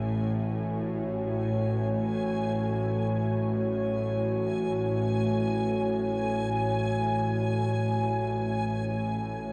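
Ominous and unsettling, this dark ambient drone, cut from a longer piece, drifts in free time over a single F#m chord for 9.5 seconds, with a deep, moody analog pad holding sustained chords through chorus and shimmer reverb, a tense, string-like bowed drone with ring modulation and vibrato rumbling low beneath it, and a quieter reversed, granular texture adding a bright, dreamy shimmer on high, all set in a cavernous cathedral reverb with the muffled top end of cassette tape.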